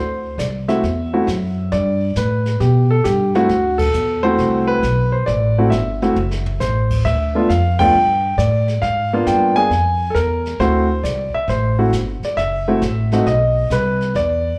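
Heard as a live club set through the venue's PA, this recording carries a light room reverb that gives it a lively, close-to-the-stage feel. It is a relaxed, playful jazz piano trio in D mixolydian at 135 BPM in 4/4, with swung eighth notes, and it is a short section cut from a longer piece. The grand piano sits up front and warm, carrying the melody with a slapback echo. The upright bass is played pizzicato on steel strings and sounds woody and forward. The brush drum kit enters at 0.4 seconds, set further back, with dark cymbals, a medium-tuned snare, a boomy kick and a slapback echo. The band hits accents together at 3.7 and 7.7 seconds and moves through chords such as D9, Gadd9, G7sus2 and G#dim7, closing on F#m7b5 to B.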